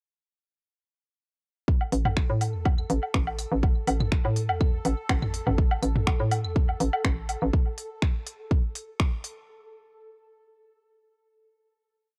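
A punchy four-on-the-floor electronic kick opens this short, quirky minimal techno piece at 1.7 seconds, setting a straight 123 BPM groove in 4/4. Up front, a hollow, bouncy FM bass knocks out a dotted rhythm from A1 to A2 with sidechain pumping. Electronic woodblock, claves and low tom click and blip in cross rhythm through analog delay, while a techno kit adds smooth programmed hats and finger-snap backbeats. A bubbling, detuned sawtooth texture holds a bright, resonant high note with random filter steps, chorus and its own reverb, lingering until 9.5 seconds. The dry, gritty hardware sound has a cassette-tape grain, and the kick, kit and percussion carry a tape-warm tone, with the kick and kit re-recorded in a small room.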